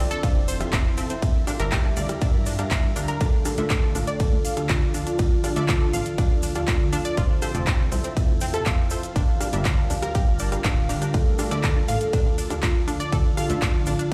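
A punchy, layered electronic kick sits up front in this bittersweet, expansive progressive house piece, driving a straight 4/4 at 121 BPM in D minor, with the kick entering at 0.2 seconds. Above it, a soft, round, full-bodied synth lead carries the melody with a sub octave, vibrato and a dark edge, treated with chorus, phaser, dub echo and sidechain pumping. A tight, driving sequenced synth spins detuned arpeggios through chorus, phaser and delay, while a lush unison pluck adds punchy stabs with delay in the background. Underneath, a funky, wave-folded analog bass plucks out the low end, and a shimmering, ethereal pad holds granular sustained chords with an octave-up shimmer and its own reverb, all pumping to the kick. A pop drum kit of handclaps, metallic overdriven hi-hats, ride cymbal and rim click joins from 0.1 seconds alongside a grainy, close and dry cabasa, with the chords cycling through Fmaj7, Gm7 and Dm in a large studio reverb, in a section cut from a longer piece.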